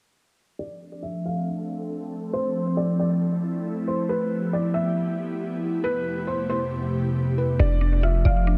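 An ethereal, airy pad carries this blissful, floating hip hop excerpt in a half-time feel, its detuned unison chords bathed in ensemble chorus and reverb beneath a soft, felt-muted upright piano melody with audible action noise and a vintage, intimate tone. A filter sweep runs through the opening stretch over extended chords in an echo-heavy mix with light reverb. At 7.6 s a woody, round mallet-like synth pluck adds chorused arpeggios, and a deep, boomy 808-style bass enters up front.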